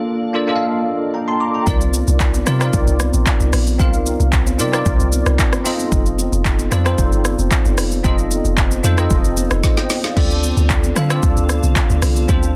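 Amapiano with a soulful, late-night mood, this excerpt opens on a brief break where a bell-like tine electric piano, brilliant and clean with ensemble chorus, sits up front over a glassy FM pad that hovers in the background with phaser, built-in reverb and sidechain pumping. At 1.7 seconds the groove drops in: a deep, round log drum bass with a fast attack and dark, decaying tail, alongside a layered electronic deep house kit with a deep kick, woody snare, metallic hats, handclaps, rim clicks, shaker and crash cymbal. High-tuned congas struck with hard hands add a distant, large-room colour behind the kit. A drum fill arrives at 9.6 seconds, and the ethereal pad returns near the end as the chords move from Cm11 through F7 to Dm7. The sound is dry and dense, with a heavily limited modern master that keeps the piano and drums forward.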